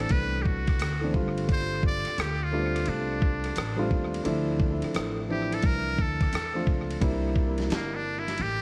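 A cool, smoky jazz-hop groove opens all at once: a buzzy, metal-muted trumpet carrying the melody, a dark, mellow grand piano comping beneath it, a woody pizzicato upright bass, and a gritty, sampler-style drum kit. The drums sit up front with a thumpy kick, fat snare, hi-hat, ride cymbal and rim click, all given a compressed swing on the sixteenths. The piano voices rich extended chords, moving from D13 to G9sus4 and settling on Dm9, and both it and the trumpet trail a tape echo. At 7.0 seconds the harmony shifts to C9 and the muted trumpet steps into a short solo, its thin, soft-attacked tone carrying a light vibrato. The whole piece is steeped in vinyl crackle and a lightly reverberant, echo-heavy studio ambience, and this fragment of a longer piece breaks off at 8.6 seconds.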